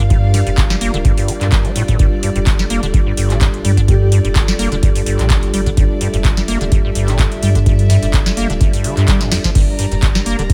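Acid house at 127 BPM in G dorian, hypnotic and driving, where a deep, tape-warm electronic kick and a booming analog drum machine with crisp snare, handclaps, metallic hats and crash enter at 0.1 seconds and fill at 9.2 seconds beneath a squelchy, resonant acid bass riff drenched in tube saturation, gritty sampler crunch and dub echo, a round sine sub bass, a moody, detuned pad holding a Gm7 chord, a hushed bowed chamber string section, and a breathy flute-like lead that flickers briefly at 3.9 seconds, with the bass, pad and strings pumping against the kick in a dry mix.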